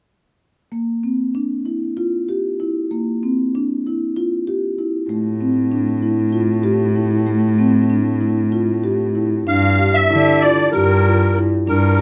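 Contemporary instrumental music in 7/8, pensive yet urgent, taken from a longer piece. Soft-mallet marimba opens at 0.7 seconds with mellow, round arpeggios, and at 5.1 seconds a single bowed cello joins on a warm, expressive bass line with vibrato, portamento and a soft attack. At 9.5 seconds a reedy musette accordion with shimmering, wet tuning takes the melody, all three parts sitting up front in a close, detailed recording with light reverb.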